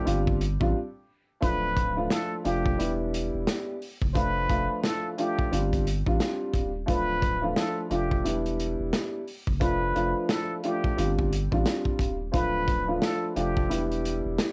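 A muted trumpet and a dark concert grand piano open this boom-bap hip-hop piece together, soon joined by a saturated sub bass and a crunchy breakbeat kit. The groove sits at 88 BPM in 4/4 with a swung sixteenth feel, in D dorian, and the mood is tough yet reflective. After a short break from 0.7 to 1.4 seconds, the band settles into a loop cycling through G7sus4, Dm, Em7 and Dm/F. The plunger-muted trumpet carries a jazz-style solo melody with a breathy, wah-wah tone, light vibrato and scooped notes, while the piano provides a mellow, boxy accompaniment up front with a deep bass register. Underneath, the triangle-like sub bass is thick and sustained with a fast attack, and the drums offer a tight kick, a medium-tuned snare and hi-hat with a gritty, rolled-off top. The dry home cassette recording gives the trumpet, piano and drums a worn tape color, and the trumpet also carries a tape echo, until the trumpet drops out at 13.9 seconds as the passage closes.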